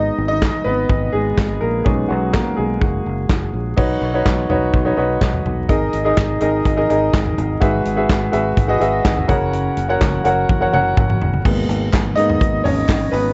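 Earnest and driving, this piano-driven pop piece puts a clear, open concert grand up front over growly fingered electric bass and a modern studio drum kit with a punchy kick and a medium-tuned snare, the drums pushing through a fill at 10.5 seconds before a very quiet, hollow group handclap slips in at 11.9 seconds, the mix wrapped in light reverb and a worn, warbling cassette-tape sheen with vinyl crackle and dulled highs.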